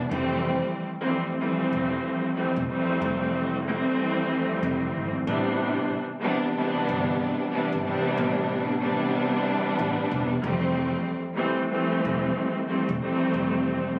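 Boom-bap hip-hop at 93 BPM in A minor with a swung 16th-note feel, this tough, gritty excerpt from a longer piece sets a clear, focused bowed string section with vibrato up front, colored by cassette-tape grit and high- and low-pass filtering, over a woody, thumpy pizzicato upright bass in the background, moving from Fmaj9 to Am11 at 5.3 seconds and back to Fmaj9 at 10.4 seconds, captured on a phone in a small room with light club reverb and compression.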